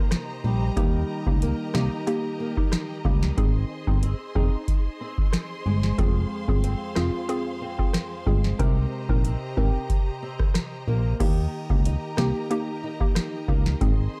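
Dancehall at 92 BPM in a straight 4/4, this short excerpt of a longer piece feels sunny and bouncy, moving through Cm7, Eb, Ab and Fm before circling back to Cm7 and Eb. A booming analog drum machine sits up front with a deep kick, crisp snare, metallic hats, rim clicks and a crash, joined at 0.4 seconds by a punchy, round FM bass with a fast attack and quick decay. A fingerpicked nylon-string guitar plays boxy, small-sounding arpeggios from the very start, while a bright, lush string section holds sustained bowed chords high above with vibrato and a sidechain pumping effect. From 0.8 seconds a hollow square-wave pluck adds mellow, bouncy accompaniment with a noise layer, a filtered pluck and a chorus shimmer. The production is dark and warm, wrapped in a digital ambience.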